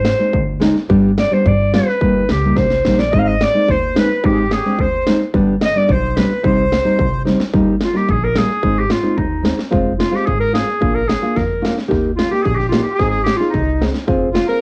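Klezmer at 109 BPM in 2/4, soulful and festive, moving from C harmonic minor into Eb major at 7.5 s, with a distant, roomy clarinet carrying the melody up front in a classical style over a thumb-plucked nylon-string guitar and a woody, thumpy pizzicato upright bass on gut strings. An electronic techno drum kit with a distorted kick and cracking snare, re-recorded in a large room and given cassette grit, punches through with fills around 2.6 s and 7.3 s. A reedy accordion with slow beating adds a soft second line from 3.1 s and again from 12.2 s, all within a moderate studio reverb and the character of a home cassette recording cut from a longer piece.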